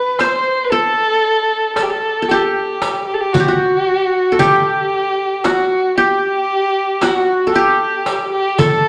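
A plucked qanun and a single bowed violin open together, setting a festive yet stately tone for this Arabic maqam ensemble cut from a longer piece. The qanun carries the melody up front, its triple strings giving a bright edge to a warm, acoustic pluck, while the dark violin adds a second line up front with woody tone, a smooth top and vibrato. Both share the same compact range from F#4 to C5 and run through the whole passage to 8.9 seconds. At 0.2 seconds a small, metal-shelled darbuka enters with crisp, high strokes from soft hands, together with a riq whose dusky jingles sit in the background of a live room. The percussion holds a straight-feeling cycle in 10/8, and a large studio reverb with a 1.1-second tail wraps the ensemble in a generous, wet space.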